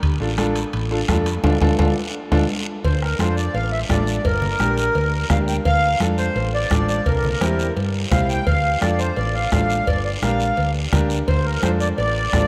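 A reedy, sweet accordion with light tremolo tuning carries the melody from 2.8 s in this passionate, driving cumbia excerpt at 171 BPM in D minor, over an up-front, dark and round hollow-body short-scale fingered electric bass, a bright, woody upright piano entering at 0.2 s, a soft-beater bombo, hard-handed ringing congas in the background, a raspy, close guiro and very quiet metal-shell timbales and cowbell, with a drum fill and band accent from 1.4 to 2.8 s, inside a vast, echoing cathedral reverb.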